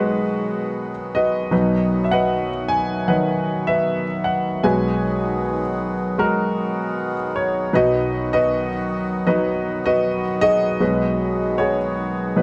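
Tender and hopeful, this unhurried acoustic folk-pop ballad moves at 77 BPM in a straight 4/4, tuned to A4 = 442 Hz, and drifts between G#m7/B and B across its 12.4 seconds. An intimate concert grand piano carries the melody up front, its deep bass and audible action noise captured by close, detailed microphones. Beneath it, a reedy, breathing hand-pumped harmonium holds sustained chords throughout, all within a moderate large-studio reverb.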